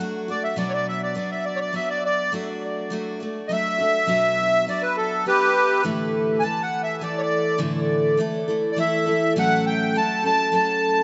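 Rock in a straight 3/4, open-road and nostalgic, built on a bright, full-bodied picked steel-string acoustic guitar that carries the accompaniment through chords moving from D/F# and Bm to Asus4 and finally A6 at 9.4 seconds. A reedy, sweet accordion with a light tremolo tuning and digital delay joins at 0.3 seconds and takes a featured solo until 7.6 seconds, sitting up front above the guitar. A lush hall reverb soaks the rough home-demo mix, whose top end is dulled, and this fragment is cut from a longer piece.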